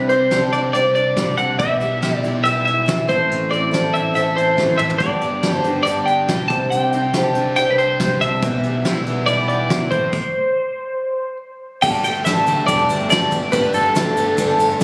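Captured on a phone in the room, this compressed excerpt has a club-like reverb around it and a light studio sheen, cut from a longer folk rock and heartland rock piece with a nostalgic mood and a straight, steady 4/4 feel. Up front, a bright, clean twelve-string electric guitar carries the melody with a twangy edge, lush chorus and analog delay, while a picked twelve-string acoustic guitar with old strings gives woody, boxy, shimmering octave-doubled accompaniment under a subtle chorus. An overdriven, double-tracked electric guitar plays a riff in the background, and a picked electric bass sits dark, round and punchy beneath it. A soft brush drum kit with dark cymbals, a fat snare and a tight kick keeps things natural, adding a fill before the band stops at 10.1 seconds. When the music resumes at 11.8 seconds on a Gsus2 chord, a grainy egg shaker joins quietly in the background, after a progression that cycles through Csus2, Em/B, Am and G.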